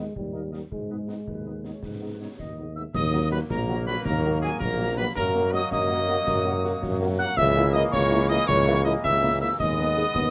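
Closely miked with light reverb, this resolute, martial wind-band march in 6/8 sets a mellow, vibrato-rich solo cornet melody over an up-front tuba bass, a very quiet dark woodwind line, a distant, roomy French horn section, an up-front euphonium that drops out at 2.3 seconds and returns only briefly at the very end, and acoustic bass drum, snare and dark-toned clash cymbals, before a hollow, tongued piccolo and tight, bright trombone chords join at about 2.9 seconds in this brief cut from a longer piece.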